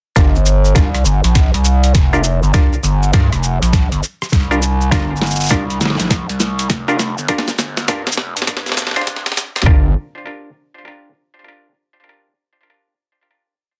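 A swung 4/4 groove at 101 BPM, with 63% swing on the sixteenths, drives this complete glitch hop piece in G minor, gritty and swaggering in mood. A thumpy, pitched-down electronic kick sits loudest in the mix, playing a broken pattern alongside a compressed, tape-warm boom bap sampler-style kit of closed hi-hat, rim click, shaker and a medium-tuned snare, with edits cut into the beat and a drum fill running through the build. Underneath, an aggressive, saturated synth bass blends square, sawtooth and sine tones with oscillator sync, overdriven and resonant, chopping out phrases between F1 and G2. A muted, stringy clav heard through a combo amp adds syncopated, close-voiced stabs on a Gm7 chord, pumping under sidechain, echoing through a digital delay and shaped by a low-pass filter sweep across the build-up from 0.2 to 9.7 seconds. A final chord then carries the piece to 12.0 seconds in light reverb, and the master is dense and heavily limited.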